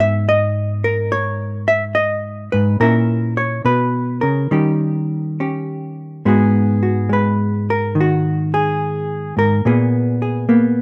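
Swung eighths at a rubato 71 BPM in 4/4 carry this moody, cool solo jazz fragment in G# minor, where a dark, clean, fingered hollow-body electric guitar sits up front in a dry, close 1970s-style studio sound, moving through G#m9, A#dim and D#7 before a new passage from 6.3 seconds opens on G#m7.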